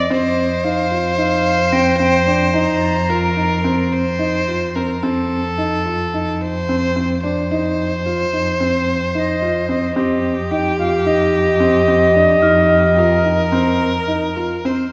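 A reedy, airy flute melody leads this hopeful, playful contemporary chamber piece in 9/8 from the very start, sounding together with an intimate sul tasto viola second line, an expressive bowed cello holding the bass with vibrato and portamento, soft shimmering crotales in the background, and a mellow, boxy concert grand piano playing dark arpeggios over a Cm7/F harmony. The flute breaks off at 3.6 seconds and returns at 9.2, the crotales ring out again from 12.4 seconds, and a moderate concert hall reverb surrounds the ensemble.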